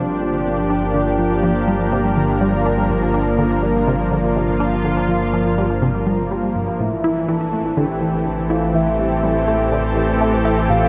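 A straight 4/4 pulse at 123 BPM drives this hypnotic, cosmic piece of ambient, sequencer-driven space music in G dorian, cut from a longer work, where a tight, detuned sawtooth sequenced riff with a plucky filter sits mellow in the background through chorus, phaser and tape echo. A lush, warbling unison pad holds bright, up-front sustained chords over an evolving analog drone bass with pulse-width modulation and a moving notch, moving from Gm7 to Am7 at 6.8 s. At that same moment a soft, round, octave-layered lead enters high with tremolo, vibrato and tape echo, all bathed in a dreamy cathedral reverb with a 4.9-second tail.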